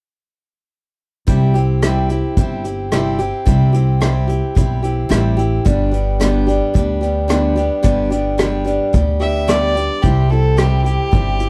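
Sunny and easygoing, this brief honky-tonk and classic country cut opens at 1.3 seconds with a bright, boxy picked parlour acoustic guitar and a woody, dark pizzicato upright bass up front, over a tight-kicked, roomy drum kit played with bundle sticks on hi-hat, kick and rim click. The chords move from C to G and back to C, and a clear, earthy bowed fiddle with light vibrato joins from a distance at 9.2 seconds, all with little reverb.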